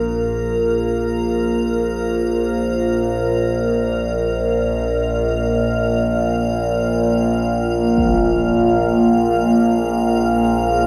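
Drenched in a vast reverb with a long tail, this unsettling dark ambient drone drifts in free time, tuned to A4 = 439 Hz, with its pad fading in gradually, as a fragment of a longer piece. Up front, a nasal, resonant drone with moving overtones holds the low register between Bb1 and Bb2, while a deep, moody analog pad of detuned sawtooth and triangle waves sustains chords through chorus, phaser and shimmer reverb, and a faint, icy, crystalline glass pad glints higher up. At 8.0 seconds a huge, bright impact sounds in the background through a low-pass filter.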